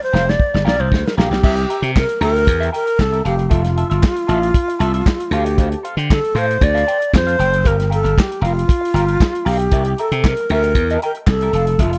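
A breathy, bright alto flute with vibrato and a crisp attack opens this sultry 116 BPM disco excerpt, soloing over a drum fill until 1.4 s while a dark, clean semi-hollow electric guitar plays softly through a wah. A growly, punchy slap bass enters at 0.1 s, and the dry soul drum kit, with its tight kick, medium-tuned snare, hi-hat, handclaps and crash cymbal, settles into a danceable straight groove over a Gm7, C7, Fmaj7 and Dm7 progression. The small room reverb and dark, warm production frame the drums' rolled-off top, while the unsteady flute, with its lifted highs, sits up front.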